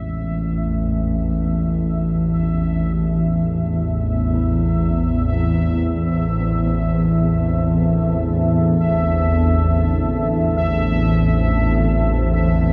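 A tense, string-like bowed drone sits up front in low A minor, its detuned sawtooth body and vibrato sinking into a huge, cavernous reverb, while a moody analog pad fades in behind it, a bubbling resonant texture with random filter steps hovers above, and a very quiet bronze singing bowl rings metallic arpeggios until 12.3 s, all in free time through worn, warbling cassette tape in this dark ambient drone cut from a longer piece.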